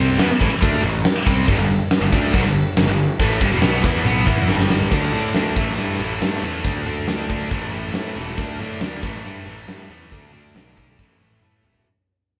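A scooped, high-gain electric guitar and a fuzzy, growly picked bass start together at once, with the big acoustic drum kit joining at 0.2 seconds in this anthemic, energetic hard rock excerpt at 139 BPM in a straight 4/4. The double-tracked guitar sits up front, bright and distorted as it drives a riff that ranges from E2 to E4, while the overdriven bass rumbles down to E1 beneath it. The drums sound dark and smooth with a rolled-off top, a fat snare and a punchy kick, and they add crash cymbal, hi-hat and toms, including fills at 4.1 and 11.0 seconds. The chords begin on A5 and G5, then move between D5 and A5 once the second section arrives at 4.9 seconds, where a fade-out begins and runs to the end of this cut from a longer piece. The band plays live together in a moderate stone room whose reverb gives the whole performance a roomy, powerful presence.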